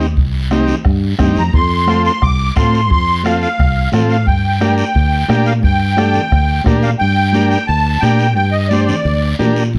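Driving and fiery, this cumbia excerpt in G minor moves at 176 BPM, with a reedy, shimmering musette accordion carrying the melody up front from 1.4 seconds over a buzzy, overdriven combo organ thick with vibrato, a round, dark fingered electric bass, a raspy guiro, ringing high-tuned congas in the background and a soft-beaten bombo that drops out at 6.8 seconds, all set in a dark production with moderate studio reverb as the chords move from Cm to F to Gm.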